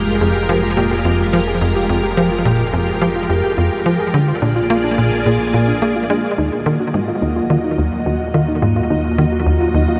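Expansive and mysterious, this excerpt of ambient, sequencer-driven space music at 107 BPM moves from F minor into Eb minor at 6.4 s, as a lush, vintage string machine holds sustained chords with ensemble chorus over a tight, punchy sequencer bass riff with tape echo, a fat, detuned analog bass sitting on F1, and soft, round plucked arpeggios entering at 0.2 s, all bathed in a huge, wet ambient reverb.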